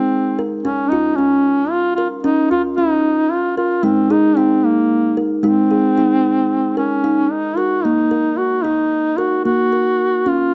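A close-miked duduk sings a folk-style melody with vibrato and scooped notes over a kalimba's soft, woody arpeggios from the first second of this dreamy, calm world meditation piece, cut from a longer work and moving at 75 BPM in a straight 6/8. The up-front kalimba rings with a mellow, hollow-box fingertip pluck and an analog delay, while the progression moves from Ab through Db and back to Ab before settling on Ebm at 7.0 seconds. A moderate spring reverb and small room ambience surround the pair, and the sound carries the worn, warbling pitch drift of old cassette tape, its top end dulled.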